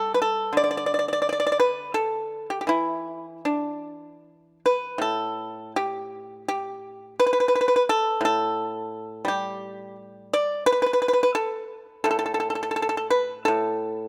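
Serene and flowing, this short excerpt of Chinese traditional solo music features a lone pipa, plucked with fingerpicks and sitting up front in a close, detailed recording, its dry, percussive tone moving freely in rubato across a span from A2 to D5 over 14.1 seconds, shifting into a new section at 5.0 seconds, with only a light touch of reverb around it.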